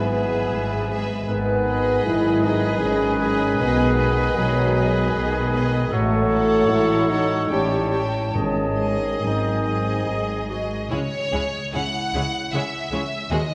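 Melancholic and yearning, this slow romantic orchestral movement in 3/4 sways with a rubato feel, cut from a longer piece. A rich, distant violin section carries the smoothly bowed melody with vibrato, while a second violin section, an oboe, a flute and a clarinet weave supporting lines around it. The oboe is clear and roomy, the flute pure and metallic with a soft attack, and the clarinet sits in the background with its warm, gentle tone. A bassoon and a lush, intense viola section fill the accompaniment, mellow French horns hold sustained chords as the most prominent layer, and a bright, ringing concert harp spins thumb-plucked arpeggios underneath. Lush cello and double bass sections anchor the bass. A very quiet timpani with hard mallets sounds briefly at 8.4 seconds, the oboe, flute, bassoon and horns fall away around 10.5 seconds with the clarinet following at 10.9 seconds, and only the strings and harp carry on as the music settles onto C# minor at 10.9 seconds, all bathed in a wet concert hall reverb.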